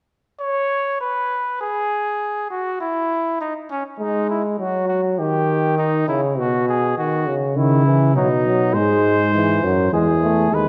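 A soft-attacked trumpet opens this solemn, serious classical canzona excerpt at 0.4 seconds, with a distant, roomy trombone entering at 4.0 seconds and a tuba with light vibrato settling into the bass at 7.6 seconds, building an imitative brass ensemble in a steady 3/4 at 101 BPM over harmonies moving through D#, C#m and B to a closing Eadd11, all set in a dark, warm production with a wet recital hall reverb.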